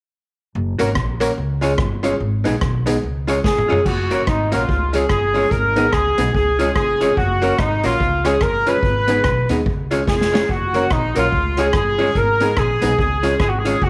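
A distant yet up-front horn section carries the melody in this bouncy, joyful ska excerpt, entering at 3.4 s with light vibrato and a roomy, pop-style ensemble sound. Underneath, the tune moves at 145 BPM in 4/4 with a swung eighth-note feel, cycling through Gb, Db and Abm in Db mixolydian. A woody pizzicato upright bass with steel strings anchors the low end, while a dark, clean hollow-body electric guitar is picked as accompaniment. A metallic, jangly tack piano with tube saturation adds short, percussive stabs. The street-band drum kit sounds big-room, airy and polished, with a boomy kick, dark cymbals and a medium-tuned snare, and it plays fills at 3.4 s and 10.1 s, all set in a moderate spring reverb.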